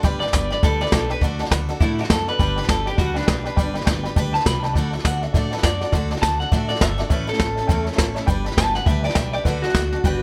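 Rockabilly with a rollicking, retro swing, this excerpt features a twangy, slightly broken-up electric guitar solo carried by spring reverb and digital delay. It rides over a thumpy pizzicato upright bass on gut strings, a full-bodied, picked dreadnought acoustic guitar, a detuned, jangly honky-tonk upright piano sitting in the background, and an up-front jazz kit played with brushes whose dark, rolled-off sound pairs a punchy kick with a medium-tuned snare, the mix wrapped in light reverb.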